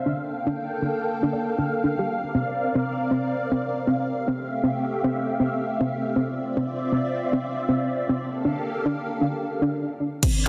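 Drenched in a lush hall reverb and pressed into a dense, heavily limited modern master, this moody deep house passage at 118 BPM, with a 60% sixteenth swing and tuned to A4 = 439 Hz, opens on silky, vintage string-machine chords with phaser and ensemble chorus, pumping against a sidechain through Gm9, C9sus4, Fmaj9 and Dm9. Over them, a soft, round, dark pluck plays chorused arpeggios with digital delay and its own sidechain pumping while a filter sweeps across it, until a stop from 9.7 to 10.2 s. At 10.2 s a punchy, layered electronic kick and a deep house kit of low-passed crash and hi-hat land up front just as this cut from a longer piece ends.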